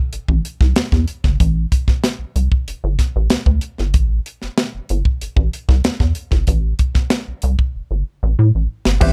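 A rubbery, bouncy square-wave bass sits up front in this funky, hypnotic clip from a longer funk piece, its hollow, resonant tone shaped by a filter pluck and a moving notch over a held A minor seventh chord. A tight, dry drum kit plays alongside it from 0.1 seconds, with a punchy kick, a high-tuned snare, hi-hat and crash cymbal giving a polished, airy snap. The drums break into a fill at 7.8 seconds. At 9.0 seconds a clean, compressed semi-hollow electric guitar with wah and a fat, lightly overdriven tonewheel organ with percussive stabs and a slow rotary speaker appear for only a brief moment before the clip ends. The production is dark and warm, with little reverb.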